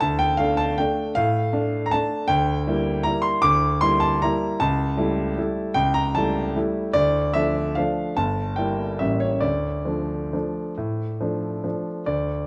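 A solo concert grand piano opens this classical waltz excerpt, its tone smooth and vintage, with a deep bass and an up-front presence. The music moves in a flexible three-beat lilt, stretching and easing the pulse in a rubato manner that gives it a nostalgic, bittersweet mood. The piano spans a broad register from G1 up to D6, and its harmony drifts through shadowy diminished and dominant colors before settling back on the home chord at 9.4 seconds. A moderate recital-hall reverb, lasting about 1.7 seconds, surrounds the instrument, and the overall production is dark and warm. The piano plays alone until it stops at 12.5 seconds, as the passage is cut from a longer piece.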